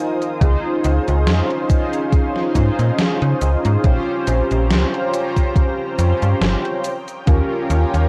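A lightly swung groove in four, cut from a longer piece, opens with synth brass and a pad, and a gated 80s digital drum machine joins at 0.2 s, ticking out cabasa, hi-hat and a gated-reverb snare, all roughed up with overdrive, while a thumpy, overdriven electronic kick sits up front from 0.4 s. Arriving at the same moment, a slap-like FM bass adds snappy, metallic attacks that decay quickly, its digital bite thickened by tube saturation. Above it, a mellow synth brass part carries the accompaniment with a round, detuned sawtooth-and-square tone, sub octave, filter sweep, vibrato, subtle chorus and tape echo. Far behind, a lush unison pad holds bright, thick sustained chords with a slow attack and long release, shimmering through chorus and phaser. The harmony drifts from Dbmaj9 to Bbm69 and then Eb9, and the whole vaporwave track sounds worn and warbly, like old cassette tape with pitch drift and light reverb, leaving a melancholic, woozy mood.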